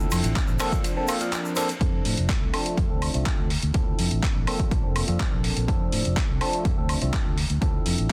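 A punchy, overdriven electronic kick arriving at 0.4 s anchors this funky, joyful filtered disco house excerpt, opening on a drop. Beneath it sits a dark, round fingered electric bass under a low-pass filter and sidechain pumping. A bell-like tine electric piano, bright and clean through phaser, pumping and a low-pass filter, cycles through Dm9, Bbmaj9 and F6. A gritty, tape-toned sampler-style kit adds compressed handclaps, hi-hat, ride cymbal and woodblock with studio reverb and pumping, while a close, dry egg shaker murmurs in the background, all within a dense, heavily limited master.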